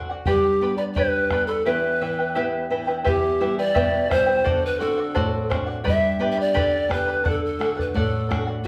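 In a straight 2/4 pulse, this wistful yet festive Andean folk excerpt places an airy, wooden pan flute melody up front, its soft attack and vibrato carried over a shimmering, double-strung fingerpicked charango, a fingerpicked flamenco guitar with fresh strings and audible finger squeak, and a round bombo entering at 0.3 s, the ensemble heard playing live together in one room with a wet, large studio reverb.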